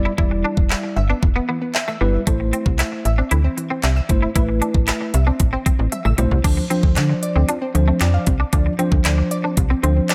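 A mellow, slightly out-of-tune tine electric piano and a snappy FM bass with a metallic, slap-like attack open this upbeat, carefree dance-pop excerpt, both pulsing with sidechain pumping, and they are joined almost at once by a twangy, scooped electric guitar riff with ensemble chorus and a glassy, detuned wavetable pluck tracing bright arpeggios through chorus, tape echo and the same pumping. The layered pop drum kit sits up front with a knocking kick, crisp hats, handclaps, toms and crash cymbal, and a drum fill at 5.9 seconds leads into a new section at 6.4 seconds as the chords move from Em and Am to Dm7. Light reverb and a digital ambience surround the mix.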